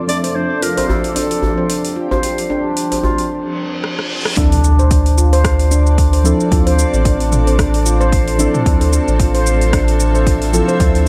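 A swung sixteenth-note groove at 112 BPM in 4/4 drives this hypnotic, mystical organic downtempo excerpt in D minor, resting on a Dm7 chord. An overdriven deep house kit of metallic hi-hat, rim click, shaker and toms runs throughout, joined early by a tight, cracking djembe with metal rattles and soft hands, while a bright, ringing stainless-steel handpan plays up-front arpeggios with sharp finger strokes through delay and shimmer reverb. Muted, intimate felt-like synth keys with chorus and a dark, decaying tone supply accompaniment over a cloudy, evolving granular pad that carries a filter sweep and sidechain pumping. A distant, roomy clarinet sings a soft-attack classical-style melody in the opening bars until a break at 3.3 seconds, when a reverse cymbal from 3.5 seconds and a drum fill from 3.8 seconds build toward an electronic impact. At 4.4 seconds a deep, layered, overdriven kick arrives alongside a warm, round sine sub bass that pumps up front, thickening the groove under light reverb and a digital ambience.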